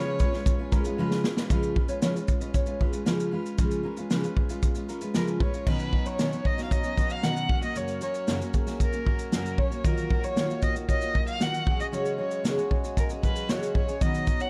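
Acoustic pop with a sunny, carefree mood, built on an up-front jumbo steel-string guitar with audible finger squeak, a fingerpicked nylon-string guitar arpeggiating in the background, and a natural country drum kit with bright cymbals, punchy kick, snare and shaker that plays a fill at 1.0 seconds. A smooth, focused single violin with vibrato and delay sounds briefly at the start and then carries the melody from 5.2 seconds, while a reedy, breathing harmonium adds sustained chords underneath from 5.7 seconds. The dark production has little reverb, and the piece is cut from a longer work.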